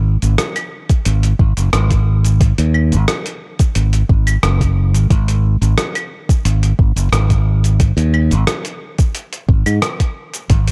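A straight 4/4 groove sets an easy, unhurried pulse for this short cut from a longer sunset chillout piece, smooth and wistful in mood. A bright, growly fingered electric bass sits up front from the very start, moving between F#1 and G#2 with a direct, present tone. At 0.2 seconds a dusty soul sampler-style kit joins with claves, hi-hat, rim click and shaker, its compressed, gritty sound overdriven and re-recorded in a small room, sitting low in the mix. A soft electronic kick, also overdriven and placed up front, enters at 0.9 seconds to anchor the beat. The production is dark with little reverb, giving the whole passage a close, intimate feel.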